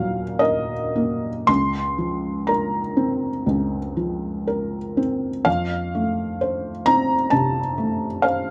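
Neoclassical minimalist piano in a wistful, intimate mood, this short fragment from a longer piece features a solo felt-muted upright piano, soft and mellow with audible action noise and short sustain, played up front and with rubato in light reverb, its harmony shifting from E-flat minor to a B-flat minor add-nine chord over D-flat at 1.5 seconds before a new section opens on F major at 5.5 seconds.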